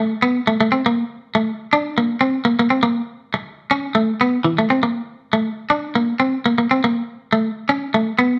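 Highlife at 120 BPM in a straight 4/4, this bittersweet yet danceable excerpt features a clean electric guitar playing solo throughout its 8.4 seconds, ranging from E3 to D4 with the tuning set at A4 = 441 Hz. The picked guitar sounds bright and twangy, compressed and placed up front. A moderate studio reverb with a 1.0-second decay gives it the feel of a band playing live together in one room.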